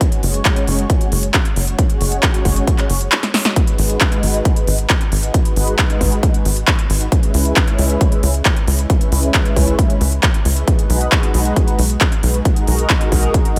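Euphoric and emotional, this uplifting trance excerpt in G# minor at 135 BPM pairs a punchy, tape-warm electronic kick and a big-room kit of crisp hats, handclaps and snare, re-recorded in a large room and pumping on the hats, with a tight, driving sawtooth sequencer bass entering at 0.2 seconds and a silky, detuned analog string pad carrying chorus, phaser and a filter sweep through F#sus2, G#m7, C#m7 and B6, while the kick drops out from 3.1 to 3.6 seconds around a drum fill from 3.2 to 3.6 seconds.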